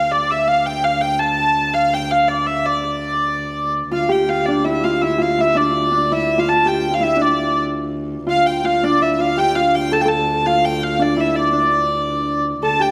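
In a straight 6/8 lilt at 110 BPM counted in dotted quarters, this medieval dance in D minor moves with an ancient, mysterious air, tuned slightly low at A4 = 438 Hz and cut from a longer piece. A rich, smooth hurdy-gurdy carries the melody up front and close, while a pure, floating viola da gamba holds a low D drone beneath it with light vibrato and an airy bow. At 3.9 seconds a fingerpicked Celtic harp adds a ringing second line, all set in a wet recital hall with a 1.7-second reverb tail.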